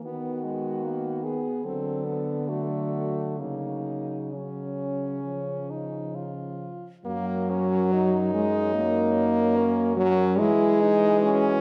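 Tender and lyrical, this short classical passage for horn quartet moves at a gentle, rubato pace of around 64-76 BPM in 4/4, settled in F# major. The melody sits on a mellow French horn with light vibrato and a soft attack, heard distant and roomy in the background, while a clear French horn carries the second line up front. A close-miked, mellow horn with light vibrato supplies the inner accompaniment, and a fourth mellow horn with a smooth top and light vibrato anchors the bass. All four horns play together from the start at 0.0 s through 11.6 s, with the harmony passing through chords such as B/D#, D and F#/C# before reaching F# at 7.1 s and an F#7(omit3)/E at 10.4 s. A wet concert hall reverb with a 1.8 s decay bathes the ensemble, and the passage is cut from a longer piece.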